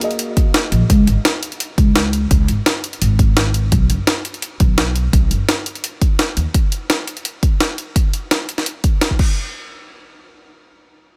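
A small room reverb lends this dreamy, warm liquid drum and bass fragment a close, intimate sound, cut from a longer piece and moving at 170 BPM in a straight 4/4, tuned slightly high to A4 = 441 Hz. A felt-muted upright piano opens on an F#add9 chord, its soft, dark tone thickened by felt, with audible action noise, short sustain, a low-pass filter and digital delay, but it sits low in the mix and drops out at 0.9 s as the harmony moves to C#5. A gritty, sampler-style breakbeat kit, compressed and pitched up with a high-tuned snare, hi-hat and crash cymbal, runs up front through most of the fragment. A punchy, layered electronic kick joins at 0.4 s. A woody acoustic upright bass with steel strings enters at 0.7 s, is played pizzicato, and sits prominently in the low register until 6.5 s.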